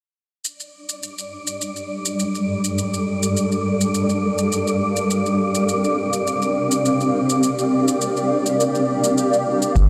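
A blurred, detuned granular cloud pad sits up front in this earthy, dreamy organic downtempo piece in G minor at 103 BPM, entering at 1.6 s with slow-attack chords that move from Gm7 to C7sus4 at 5.1 s, colored by ensemble chorus, sidechain pumping and a filter sweep. An overdriven electronic shaker opens the track, soon joined by a dark, breathy wind-like noise texture with analog chorus, all soaked in a huge ambient reverb. At 9.8 s a round sine sub bass and a very soft, overdriven kick drum arrive just as this cut from a longer piece ends.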